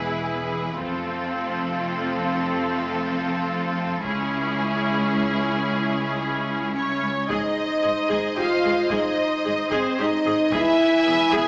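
Heard through a small speaker and bathed in wet scoring-stage reverb, this triumphant, adventurous cut from an epic orchestral film score in 3/4 builds through its first 7.3 seconds as an intense, distant violin section carries the lush melody over a smooth-topped second violin line, clear vibrato violas, mellow, vintage French horn chords, a bright cello section and a dark, woody double bass section, while compressed, saturated taiko drums struck with heavy sticks sit in the background from 0.8 seconds.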